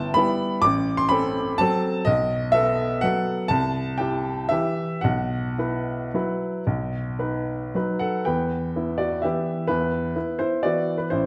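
A classical piano waltz in 3/4, this short excerpt cut from a longer piece has an elegant, nostalgic mood and a flexible, rubato feel. A single upright piano plays alone throughout, spanning the range from G1 to D6 with a woody, natural tone, long sustain and an up-front presence. The harmony moves from Em/G through F#dim/A, B7, C, Bsus4 and B before settling back on Em at 8.3 seconds, where a new section begins and carries on to the end at 11.3 seconds. A wet recital hall reverb surrounds the instrument, lending the sound a sense of space.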